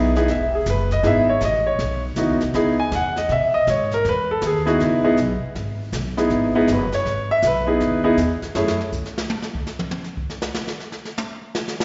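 A swinging 4/4 at 160 BPM drives this smoky, moody jazz piano trio excerpt in C# minor, where a woody pizzicato upright bass and brushed drums with a boomy kick support a warm, up-front concert grand carrying the melody over C#m7 harmony that opens with a rootless voicing, with slapback echo on piano and kit, before the piano and bass stop at 8.8 s and the drums take a solo that began at 8.6 s, all heard through a live venue PA with lush recital-hall reverb and rolled-off highs.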